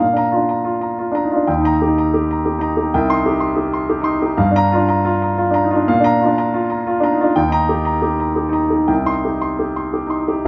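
Neoclassical minimalist piano in 3/4, melancholic and intimate, moving at 122 BPM with a rubato feel through a brief 10.5-second excerpt of a longer piece. A solo concert grand piano, sounding warm and open with a deep bass, sits up front and spans from G1 to C6 as it cycles through Bb, Eb, Cm and Gm7 before returning to Bb, Eb and Cm. Light reverb gives the close playing a gentle sense of space.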